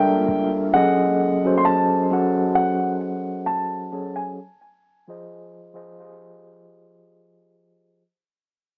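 A warm, intimate grand piano carries the melody up front, its action noise audible as it sings high in its range, colored by a low-pass filter, cassette tape character and tape echo. Beside it, a mellow tine electric piano plays the accompaniment from the very start to the end, its clean tone heard through built-in speakers and also shaded by the filter and tape. A clean, boomy 808-style bass sounds only once, a deep sine-like note with a fast attack that decays in the background between 0.3 and 0.7 seconds. This smooth, tender contemporary R&B fragment, cut from a longer piece, moves at an unhurried pace with a light swing, drifting through minor-sixth chords to a closing Fm7. A moderate small-room reverb and the feel of a home cassette recording played on a small speaker frame the sound, while a filter sweep and a fade-out run across the full 8 seconds.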